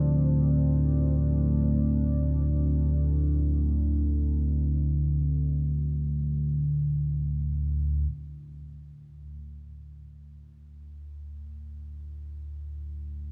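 Cavernous and desolate, this dark ambient drone in D minor drifts in free time, as an up-front, warbling analog drone of vintage sawtooth and pulse-wave tone with pulse-width modulation and lush chorus sustains low notes from 0.0 to 13.3 s, while a detuned, full-bodied resonant pad with a sub octave, filter swell and chorus holds Dm chords and fades out by 8.1 s, leaving the drone alone on a D5 chord under a long cathedral reverb in what is cut from a longer piece.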